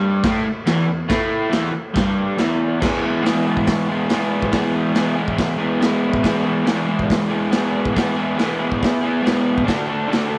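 A bright, crunchy, double-tracked electric guitar sits up front with a picked, overdriven riff in spring reverb, moving from an E5 power chord to E at 2.8 seconds and D at 9.7 seconds, while a gritty, saturated acoustic drum kit enters at 0.2 seconds with a punchy kick, medium-tuned snare, hi-hat and dark crash cymbals in a pumping small room with a rolled-off top, giving this rowdy, swaggering garage rock excerpt a straight 4/4 feel under a moderate plate reverb.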